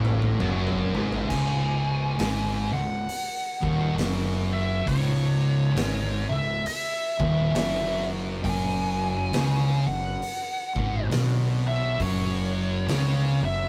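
A slow, swung 4/4 at 67 BPM drags this hypnotic, ominous stoner and doom metal excerpt forward in C# minor, opening with a drum fill from an oversized, low-tuned kit with a fat snare, punchy kick and dark cymbals, all saturated and gritty in a pumping stone room. Beneath it, a pair of thick fuzz guitars grind out the riff throughout, one dark and the other warmer and set further back, while a growly, overdriven fingered bass adds tube-saturated weight down low. A bright, double-tracked overdriven guitar sounds only briefly over the opening rootless Eadd9 before dropping away. At 1.3 seconds the harmony settles on C#m and an up-front fuzz lead guitar enters high above, its wah-inflected melody riding over the riff to the end as the chords later move to F#5. The drums stop at 13.1 seconds, and the whole take has the rough, tube-saturated feel of a rehearsal room with a moderate stone reverb.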